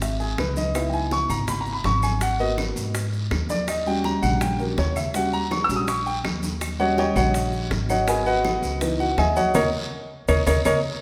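Driving and fiery, this Afro-Cuban jazz excerpt puts an up-front baby grand piano with long sustain at the center over pizzicato upright bass with steel strings, while background congas, round low-tuned bongos, woody claves entering at 0.4 seconds, raspy guiro and grainy maracas fill out the percussion, with drum fills and a closing band accent from 9.5 seconds, all in a reverberant recital hall.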